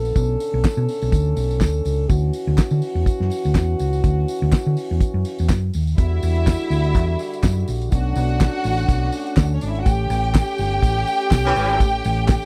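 Disco at 124 BPM in B minor with a sultry, driving 16th-note swing, cut from a longer piece, where a damped 70s drum kit of handclaps, hi-hat, tight kick and fat snare sits up front beside a round, punchy hollow-body short-scale bass. A mellow French horn section holds soft-attack chords through Bm7 and Dmaj9, a jingly tambourine stays in the background, and a lush, clear string section enters at 6.0 seconds as a second line over Em9, Bm9 and A7. A roomy pop-style horn section adds a brief stab at 11.4 seconds, all within a dry, close 1970s-style studio sound.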